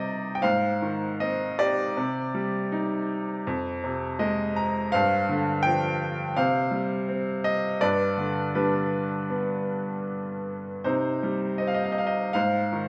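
A bright, woody upright piano sits up front in a recital hall with moderate reverb, its long sustain ringing into the space in this short excerpt cut from a longer classical piece. Playing alone in C minor at around 81 BPM with a rubato, unevenly paced feel, the lyrical solo piano moves through a melancholic, dark progression from Abmaj7 through Fm and G7sus4 to Cm, spanning F2 to Bb5. A brief fill from 3.8 to 4.9 seconds lends a brilliant, natural sparkle before the harmony settles onto Ab6 near the close.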